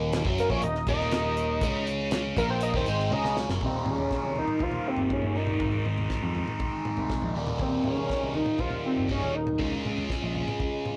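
A rough rehearsal-room recording with tube saturation and a moderate studio reverb gives this psychedelic rock excerpt a hazy, hypnotic air. At 120 BPM in a straight 4/4 and Eb mixolydian, a biting, double-tracked overdriven guitar plays the riff up front through a phaser. A punchy picked electric bass and a damped 70s drum kit with a fat snare, tight kick and rolled-off top hold the groove beneath it. The hollow sawtooth-and-triangle synth lead, layered with an added fifth and coloured by chorus and vibrato, carries the melody with a fast attack and long sustain, taking a solo over the opening section until 3.6 seconds. A short drum fill from 3.1 seconds leads into the second section, where the harmony moves from Eb to Ab, back to Eb and then to Db.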